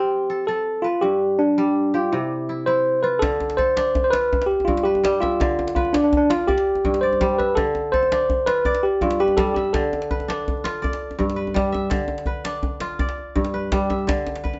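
Flowing and joyful, this short cut from a longer piece of West African string and xylophone music moves in a straight 12/8, with a bright, clean tine electric piano carrying the melody up front while the kora spins crisp, ringing fingerpicked arpeggios across a broad range. At 3.2 seconds a deep, close and dry djembe joins, played with hard hands, as the harmony settles into a back-and-forth between D minor and G; the electric piano drops out at 11.1 seconds, leaving kora and djembe to finish at 14.6 seconds. The band plays live in one room under moderate studio reverb, and the sound stays soft-edged at the top.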